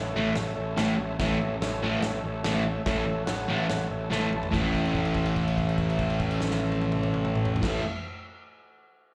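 A double-tracked fuzz guitar riff leads this raw, swaggering garage rock fragment, heard as a live club gig, over a growly, bright overdriven bass, a tight-kicked vintage kit with dark cymbals and a rolled-off top, and a mellow combo organ holding chords with light vibrato in the background, until an organ fill from 3.7 seconds and a drum fill at 4.1 seconds usher in a new section built around a held note from 4.5 seconds.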